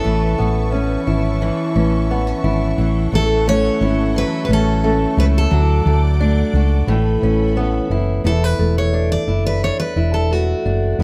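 A lightly reverberant mix carries this easy-going, heartfelt acoustic pop excerpt, led by a full-bodied jumbo steel-string guitar picking the melody with audible finger squeak. Beneath it, a dark, fingerpicked concert steel-string guitar plays the accompaniment up front, a small nylon-string guitar adds arpeggios in the background, and a round, punchy hollow-body electric bass sits prominently underneath. A woody, bowed studio string section holds sustained chords with light vibrato and a soft attack until 8.2 s, just before the harmony moves to an E7sus4 for the closing passage.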